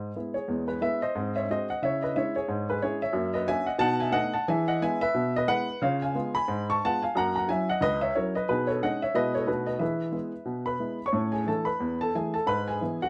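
Stride piano jazz in E major at a brisk 180 BPM with a playful, swinging feel, this short cut from a longer piece features a solo upright piano, woody, intimate and up front with audible action noise, spanning C#2 to C#6 in a moderate studio reverb as it moves through a chord run of E, G#7, C#m, F#7 and B7 before shifting to A at 11.1 seconds and closing on E/G# by 13.1 seconds.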